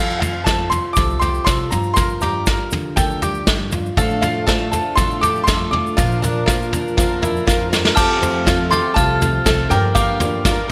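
Uplifting and warm, this building indie folk excerpt sets a brilliant, woody upright piano melody over twangy fingerpicked banjo arpeggios, a full-bodied fingerpicked steel-string acoustic guitar, a thumpy gut-strung upright bass, a grainy tube shaker and an up-front brush drum kit with dark cymbals and a punchy kick. At 4.0 s a boxy, shimmering twelve-string acoustic guitar and a very quiet, reedy, breathing harmonium join. During a drum fill, a metallic, bell-like glockenspiel with digital delay enters at 7.9 s, and at 8.0 s a very quiet, worn dark grand piano comes in as the steel-string guitar drops out, all in a light reverb.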